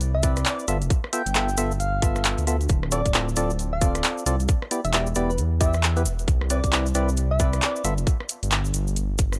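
A dry, close-sounding cut from a longer late-night, moody two-step UK garage track, built on a deep, rumbling detuned saw bass and a tight, layered electronic kick up front, with a punchy, tape-warm analog drum machine of handclaps, hi-hat and rim click, grainy cabasa, hollow percussive organ stabs carrying chorus, 12-bit sampler grit and dub echo, and a round, gentle struck synth lead with chorus, cassette tape colour and dub echo, the lead dropping out at 7.8 seconds and the stabs just after at 7.9, over chords moving from Cmaj9 through G13, Dm7 and Em7.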